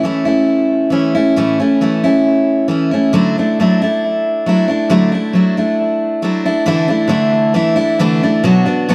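Jangly and hopeful, this short rock excerpt moves at 136 BPM in a straight 4/4, slightly flat of standard pitch with A tuned to 439 Hz. A single picked steel-string acoustic guitar plays alone throughout, a dreadnought with a warm, up-front tone that spans from A2 to F#4. Analog delay on the guitar gives the sound an echo-heavy character, set in light reverb. The harmony opens on A and shifts to Dadd9 at 3.1 seconds, then a new section arrives at 6.7 seconds on Dsus2 before turning to Bm. Cut from a longer piece, it lasts just under nine seconds, its chords carrying a forward-looking feel.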